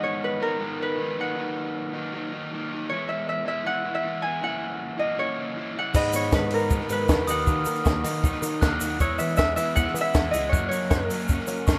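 A ringing, up-front concert harp carries the melody with tape echo over a dark, overdriven electric guitar riff bathed in spring reverb in this jangly, upbeat indie rock excerpt at 157 BPM in E lydian, joined at 5.9 seconds by a very quiet, bright twelve-string electric guitar, a round, punchy picked bass, an up-front cocktail drum kit with a tight kick and a high-tuned snare, and a grainy egg shaker, with a mellow, bell-like glockenspiel played with rubber mallets adding a soft second line in the background from 6.0 seconds, all in a dry, rough home-demo sound.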